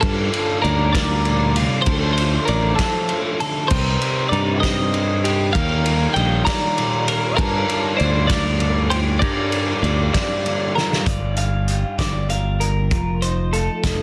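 Up front, a picked electric bass carries the low end with a warm, direct-and-amped tone, beside a loose indie drum kit that sounds saturated and gritty, with dark cymbals and a punchy kick in a studio room. This wistful, intricate stretch of math rock and midwest emo moves in 6/8, cut from a longer piece. Three clean twelve-string electric guitars play above it: a twangy lead melody with warbly pitch drift and slapback echo, a compressed chordal accompaniment sitting in the background, and bright arpeggios bathed in spring reverb. Further back, a double-tracked, crunchy overdriven guitar plays a riff through the opening section, while the harmony drifts through Gm9, Dm7, Cm7 and Ebmaj9 before settling on Gm7. The melody drops out at 10.7 seconds, and a drum fill from 10.8 to 11.1 seconds ushers in a brief new section where the riff falls away and the remaining guitars, bass and drums push toward an F7. 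The dry, dense and heavily limited master carries some lossy compression artefacts.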